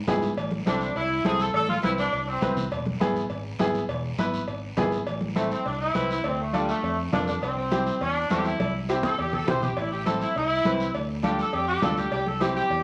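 Vinyl crackle and a wet, large studio reverb frame this danceable, passionate cumbia excerpt, where a bright, woody upright piano with short sustain and a round, fingered electric bass carry the accompaniment under close, dry congas with soft hands, a raspy guiro, and a ringing, saturated cowbell and timbales set in the background. A warm, roomy saxophone section with jazz-style vibrato sits up front, entering at 0.7 s with a brief phrase before taking a solo from 5.1 s. A drum fill arrives at 8.6 s over the minor-key chords.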